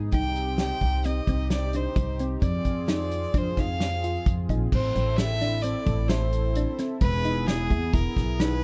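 Set in a straight 5/4, this tense, intricate progressive instrumental fragment pairs a clear, close violin melody with light vibrato against woody pizzicato upright bass and a punchy, small-room acoustic drum kit, while a round, tine-like synth pluck with chorus and phaser arpeggiates in the background over a shimmering, retro pulse-width pad, all in a dark, dry mix whose harmony turns from C minor and F minor to A minor at 4.7 seconds and E at 7.0 seconds.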